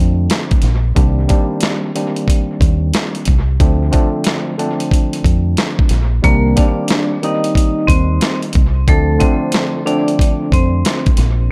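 A dry, echo-heavy mix opens this tough, reflective boom-bap hip-hop excerpt at 91 BPM in C dorian, where a gritty, compressed sampler-style drum kit with a thumpy kick and medium-tuned snare sits up front beside a dark, round, punchy fingered electric bass. A worn, slightly out-of-tune tine electric piano, filtered and heard through its built-in speakers, carries the Dm7 and Cm9 chords from the start. At 6.2 seconds a bright, ringing vibraphone played with hard mallets takes the melody, its slow motor vibrato colored by analog delay.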